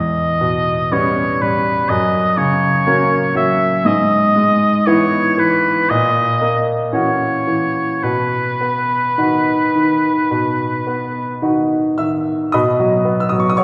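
Oboe and grand piano begin together in this tender, serene romantic chamber piece, heard as a short cut from a longer work in a flexible, rubato 4/4. The oboe carries the melody up front with a clear, slightly vintage tone, a soft attack and light vibrato, singing in a narrow middle register. Beneath it the grand piano gives a bright, brilliant accompaniment with short sustain, ranging from deep bass to high treble. The harmony moves from C#m7b5/E through F#, E/G# and F#7/A# before settling on B at 8.0 seconds. The oboe falls silent at 11.4 seconds, and the piano carries on alone until the close at 13.6 seconds, all within a wet scoring-stage reverb that places the listener further back in the room.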